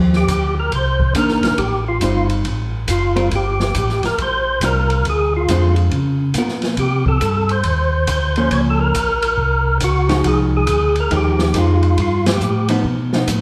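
Late-night and soulful, this soul jazz organ trio excerpt swings in 4/4, with a mellow, round tonewheel organ carrying the bass line up front through chorus vibrato and a slow rotary speaker, while an open acoustic drum kit with dark cymbals, a medium-tuned snare and a boomy kick plays hi-hat, kick, ride and snare. A fat, lightly overdriven second organ with third-harmonic percussion and key click takes the melody over rich chords like Cm9, Gm11 and Fm9, and a clean, compressed hollow-body archtop guitar enters at 1.2 seconds with picked accompaniment. The whole group is heard from further back in a large, wet studio reverb, and the band hits an accent at 12.2 seconds over a closing G7b13.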